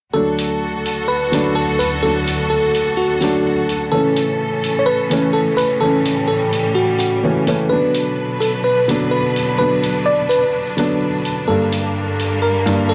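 Festival progressive house with a triumphant, uplifting mood, where a bell-like, sparkling FM electric piano carries the melody through chorus, phaser and tape echo over a dark, mellow baby grand with delay, lush bowed strings holding sustained chords with biting vibrato, and an overdriven, filtered electronic hi-hat entering at 0.4 seconds, all in light reverb as the chords move from D through A and Bm to Gm in this short cut from a longer piece.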